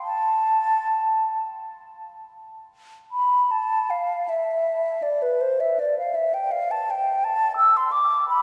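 A mellow, hollow concert flute plays alone from 0.0 to 8.4 s in this lyrical, serene classical fragment. Its pure tone carries vibrato, a soft attack and lifted highs as it ranges from B4 to E6 in a free, rubato 6/8 at about 30-58 BPM in dotted quarters, heard from further back in a wet cathedral reverb with a 5.2 s decay and moving into a new section at 3.1 s.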